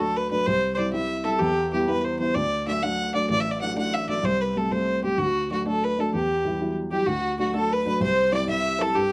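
Celtic folk in a driving, spirited 6/8, cut from a longer piece, where a biting, nasal fiddle with plate reverb carries the melody up front over a dark, woody, slightly detuned upright piano, joined at 6.9 seconds by a second fiddle, rich and earthy in the background, all set in a small room with moderate reverb.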